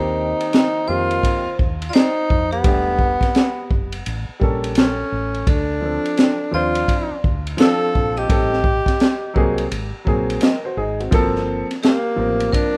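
A breathy tenor saxophone carries the melody up front in this smooth, cool jazz-hop excerpt, its whispered, intimate tone marked by vibrato, soft attacks and scooped notes, with plate reverb and analog delay trailing behind it. An upright piano sits close as accompaniment with a warm, woody sound and its own plate reverb, while a vibraphone struck with hard mallets, motor off, adds a metallic, ringing second line further back in the mix. A woody fretless electric bass plays the low end with a round, punchy, hollow-body tone. The crunchy breakbeat kit enters at 0.4 seconds, placed up front with a gritty, saturated character, a punchy kick, a high-tuned snare, and dark cymbals on hi-hat and ride, its top rolled off. The harmony moves through rich jazz chords such as Em11, A7b9 and Ab9 under a swung groove, and the whole thing has the light reverb and rough feel of a home demo mix.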